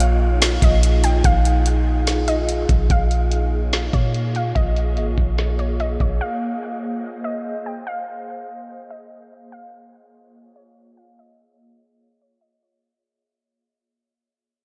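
A glassy FM pad, a warbling, lo-fi pluck, a soft, round 808-style bass and a smooth R&B kit with a knocking kick, woody snare and metallic hats all open this spacious, melancholic piece of atmospheric cloud-rap, moving at 145 BPM in a half-time feel in Bb minor over chords from Fm7/Bb to Bbm7 and Ab/Bb. The ethereal pad pumps against the sidechain through ensemble chorus, phaser and its own reverb, while the dark, detuned pluck carries the melody through chorus and a diffuse ambient delay. The up-front bass and drums drop out at about 6.2 s, leaving pad and pluck to drift through a dreamy, reverb-soaked mix under a filter sweep and a fade-out that spans the whole 12.8-second fragment.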